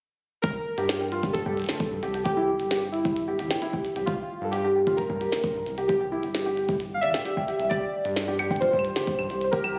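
Intricate and melancholic, this IDM excerpt moves at 132 BPM in a straight 4/4, sitting in G dorian and cycling between G minor and C before settling on a bare G5 near 7.7 seconds. Warbly lo-fi synth keys carry the melody up front, their nostalgic triangle-and-sawtooth tone smeared by chorus, phaser, digital delay and a gritty 12-bit sampler texture, with a filter sweep and decaying notes. Beneath them a round analog bass holds the low end with a deep, evolving, mellow sustain, while a soft electronic kick and a glitchy kit of claves, tiny snare and clicky hi-hats play through studio reverb. From 0.8 seconds a felt-muted upright piano adds dark, intimate arpeggios, its thick felt and audible action noise softened further by tape echo. The whole mix sits in a lush hall ambience and has the compressed feel of a phone recording made in the room.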